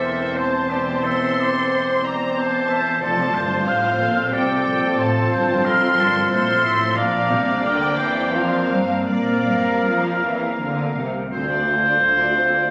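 Moving and sorrowful, this cinematic orchestral passage in 3/4 drifts with a rubato feel, its melody carried by a veiled, con sordino violin section set in the background while a second, lush violin line, a clear and distant oboe, a hollow, pure flute and a very quiet clarinet add second lines. Soft-attack violas fill the accompaniment, a dark, tight French horn section holds sustained chords, and bowed cellos with rich double basses anchor the bass. The flute drops away at 10.9 s and the clarinet at 11.0 s as this cut from a longer piece settles onto a Dm7 chord, heard in a moderate recital hall reverb captured on a phone in the room.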